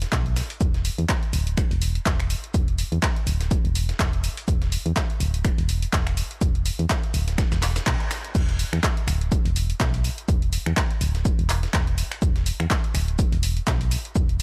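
Soulful and bittersweet, this piano house cut from a longer piece rides a swung 4/4 groove. A round, mellow FM bass sits up front with a fast attack, decaying notes and sidechain pumping, alongside an electronic kick that is punchy and forward, re-recorded in a small room. A punchy analog drum machine adds crash cymbal, finger snaps, handclaps and hi-hat, while a gritty, compressed sampler-style kit with a fat snare, shaker and filtered hats stays in the background. A band accent lands at 7.9 seconds, and the drop arrives at 8.3 seconds, carrying the groove through to the close. Digital ambience lends the mix a sense of space.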